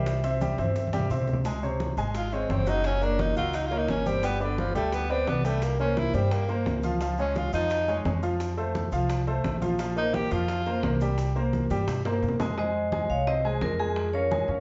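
Salsa in F minor at a brisk 173 BPM, this danceable, passionate passage is cut from a longer piece. A bright, ringing vibraphone struck with hard mallets opens the melody briefly, then gives way to a breathy, whispered tenor saxophone that takes an intimate, pop-style solo with vibrato and a soft attack from 2.2 to 10.8 seconds, before the vibraphone returns at 12.6 seconds. Underneath, a clear, polished baby grand piano carries the accompaniment up front, while a woody, thumpy upright bass with gut strings plays pizzicato lines. Low-tuned congas with a thick skin and round bongos sit in the background alongside grainy, mellow maracas. The whole mix is set in a large studio reverb and heard from further back in the room, with a dulled top end that softens the sheen.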